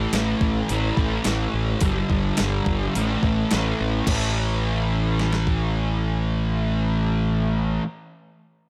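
Dreamy and melancholic, this short cut from a longer rock piece leans into shoegaze and dream pop with a straight, steady 4/4 feel. A fuzz guitar carries the riff up front, its distorted, double-tracked tone thickened by analog chorus and compression, moving through A5, G5 and back to A5 chords. Beneath it, a growling fingered electric bass sits low in an overdriven, amped register, running the full length alongside the guitar. A crisp 8-bit drum machine with a thumpy kick, medium-tuned snare, hi-hat and crash adds a sampler-style, overdriven pulse, dropping out at 5.6 seconds while guitar and bass carry on to the close. Light digital reverb gives the whole a hazy, roomy sheen.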